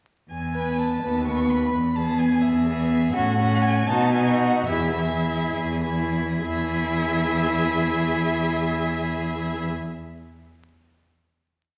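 A focused, vibrato-laden first violin sings the melody from 0.3 s over a rich, up-front cello with expressive portamento playing bass on the beats, soon joined by a smooth second violin and a warm viola in syncopated and sustained chords, in this cheerful, lively classical-period string quartet movement in E major and 6/8 at a rubato 65-87 BPM that slows from 2.4 s before settling on a final chord at 6.4 s, all heard from further back in a reverberant recital hall with vinyl crackle.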